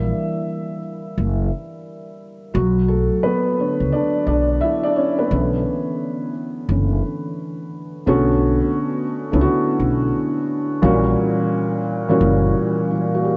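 Melancholic and nostalgic, this swung 87 BPM hip hop piece in B minor sets a soft, thick-felt upright piano, dulled by cassette tape and a low-pass filter and featured in a solo through 8.1 s, over a woody, growly pizzicato upright bass that drops out at 12.5 s, both up front in a dreamy mix soaked in church reverb.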